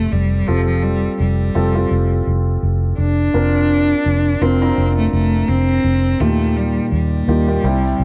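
A bowed solo cello with a focused tone, vibrato and a smooth top carries the melody over a deep-bassed concert grand piano and a round, punchy, foam-muted electric bass in this uplifting, anthemic pop excerpt with swung sixteenths, moving from Fadd9 through Bbadd9/F to Ebadd9 in a dry, close 1970s-style studio sound touched with light reverb.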